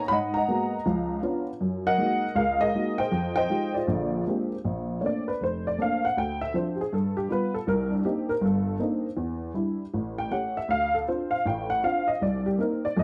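A jangly, woody honky-tonk upright piano sits up front in a moderate studio reverb, playing solo jazz with a swinging, rubato feel through lush extended chords in this short excerpt cut from a longer piece, its detuned, vintage voice turning to a solo passage from 4.7 seconds.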